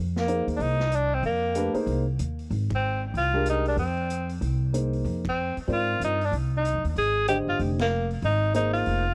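A woody, pizzicato upright bass opens this searching, cool modal jazz excerpt with a swung feel, joined almost at once by an up-front, clear tenor saxophone lead with light vibrato, scooped notes and tape echo, a natural-sounding upright piano accompanying on an Fm11 chord, and a vintage drum kit sitting low in the mix with dark cymbals and a punchy kick, as the band hits accents at 2.7, 5.2 and 7.8 seconds in a dry, close 1970s-style studio sound.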